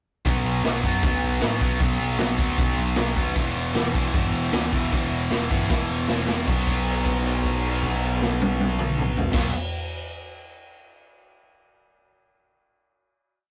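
Angry and aggressive, this short punk rock piece charges forward with a fast, straight four-beat drive in a rough rehearsal-room recording with light reverb and a saturated edge. Two electric guitars hammer out eighth-note power chords: a bright, tight distorted one sits up front, while a warm, overdriven garage guitar also drives the riff, moving from Bm to E5. Underneath, a growly, amped electric bass plays a picked, overdriven eighth-note line. The acoustic drum kit pumps in a small room with dark cymbals, a medium-tuned snare and a punchy kick, its gritty, rolled-off sound pushed up front in a fast punk groove. A drum fill at 5.7 seconds leads into a final B5 chord at 6.5 seconds, which the band holds until the piece ends just past 9 seconds.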